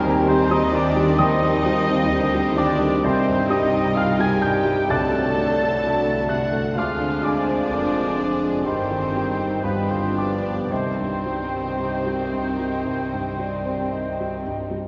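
Brooding and tragic, this classical passage, cut from a longer piece, moves with a rubato feel in 4/4, led by an intimate grand piano up front, its action noise audible, alongside a rich, bowed chamber violin section carrying the melody in the background. Clear violins, a distant oboe, a hollow flute and a mellow, very quiet clarinet weave second lines, while bassoon and viola accompany, French horns and trombones sustain chords, distant trumpets add stabs, and a lush cello section and a smooth double bass section hold the bass. Soft-mallet timpani sound briefly from 4.9 to 6.3 seconds, and a wet cathedral reverb gives the church-like hall a long, dark-toned tail.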